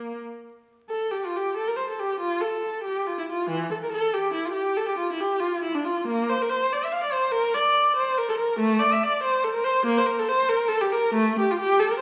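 Classical, baroque-style suite movement for solo viola in F major, a radiant, dance-like passage in 12/8 at 94 BPM with an uneven, rubato pulse, tuned to A4 = 441 Hz and cut from a longer piece. A single bowed viola spans E3 to F5 throughout its 12 seconds, its rich, expressive tone shaped by vibrato, portamento slides and soft attacks. A wet recital hall reverb places the listener further back in the room, with vinyl crackle adding a layer of surface noise.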